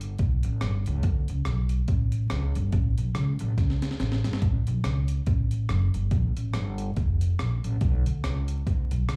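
Bouncy and cheerful, this short ska fragment, cut from a longer piece, moves at 142 BPM in 4/4 with a light swing on the eighth notes. An upright bass and a breakbeat sampler-style drum kit play together for the full 9.2 seconds, both sitting up front in the mix. The bass is plucked pizzicato on steel strings, giving a woody, growly tone with a bright edge as it moves in a low register. The drums have a compressed, gritty sampler character, with a thumpy kick, a high-tuned snare, rim clicks and hi-hat, and a fill breaks in from 3.6 to 4.4 seconds. The sound has the feel of a live gig heard through a venue's PA, with club reverb and a layer of vinyl crackle.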